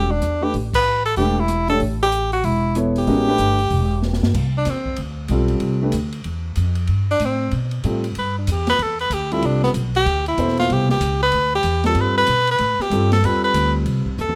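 Modal jazz with a spiritual, searching mood swings at 189 BPM as a clear, lightly vibratoed tenor saxophone with plate reverb scoops its soft-attacked notes up front, taking a solo from 4.3 s when the music settles into C major, over a natural, long-sustaining baby grand piano, a woody pizzicato upright bass and a small-room acoustic drum kit with dark cymbals and a boomy kick that plays fills at 4.0 s and 14.2 s.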